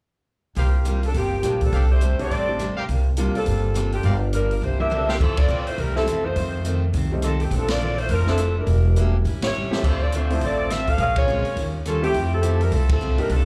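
Heard live through a club's PA with light room reverb, this short cut from a longer big band swing number in F major drives along at 207 BPM with an energetic, swinging feel. A mellow saxophone section with vibrato carries the melody up front from 1.1 seconds, while clear trumpet stabs with light vibrato ring out through plate reverb and slapback echo until 5.2 seconds, over a woody, growly upright bass, an open drum kit with dark cymbals and a boomy kick, a clear grand piano, and a bright, full-bodied picked acoustic guitar sitting in the background. A drum fill leads into the second section, where band accents punctuate a progression moving from Fmaj7 through Bbmaj9#11 and Em7b5 before returning to Fmaj7.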